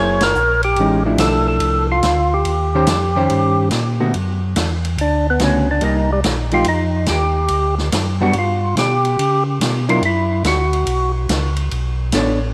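Swung eighths drive this bluesy, soulful soul jazz organ trio at 143 BPM in 4/4, opening on a band accent at 0.1 seconds as the distant, roomy drum kit keeps time on hi-hat, ride cymbal and a medium-tuned snare with a rolled-off top. A fat, lightly overdriven tonewheel organ with third-harmonic percussion, slow rotary speaker and tape echo carries the melody up front, moving into a solo at 4.1 seconds and stopping at 11.1 seconds, while a clean, fingered hollow-body electric guitar adds dark accompaniment. A round, mellow second organ with chorus vibrato and slow rotary plays the bass line over jazzy extended chords, all set in a moderate echo-chamber reverb in this passage cut from a longer piece.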